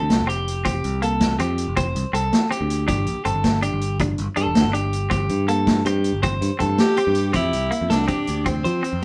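A live, in-the-room studio sound with moderate reverb frames this carefree, danceable highlife guitar band excerpt in F major, rolling along in 12/8 at 108 BPM. Two clean, compressed, picked electric guitars share the groove, one playing warm chordal accompaniment and the other playing twangy arpeggios higher up, over a growly, up-front picked bass and a saturated, gritty vintage drum kit with a tight kick and a rolled-off top. At 6.8 seconds a bright, punchy alto saxophone with vibrato takes the melody, just before the harmony returns to Fsus2 at 7.3 seconds.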